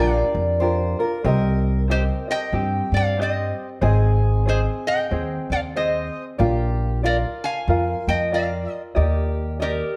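Relaxed and sunny, this Hawaiian passage, cut from a longer piece, strolls along at 93 BPM in 4/4 with a lilting swing on the eighth notes and a tuning just under standard pitch. A metallic, nasal lap resonator guitar carries the melody up front, played with slide and fingerpicks, while a picked archtop guitar with fresh strings and audible finger squeaks adds a second line and a light, thumb-plucked tenor ukulele fills in the accompaniment. A woody pizzicato upright bass sits forward in the mix until 9.8 seconds, all within a dark, warm production with light reverb, as the chords move from Bb6 through Cm, Ab and Bb to a closing Ebmaj7.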